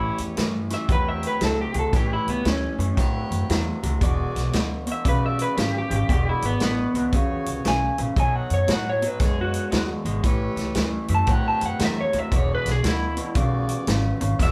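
Electric blues shuffle at 116 BPM in E mixolydian, laid-back and swaggering, cut from a longer piece: a picked, slightly broken-up electric guitar through a small old amp carries a clean solo melody over a second lo-fi, compressed guitar riff, woody pizzicato upright bass, smooth saxophone section stabs with light vibrato, and a punchy, up-front vintage drum kit of hi-hat, kick and snare entering at 0.2 seconds, all played live together in one room with light reverb over A9, E9 and B9 chords.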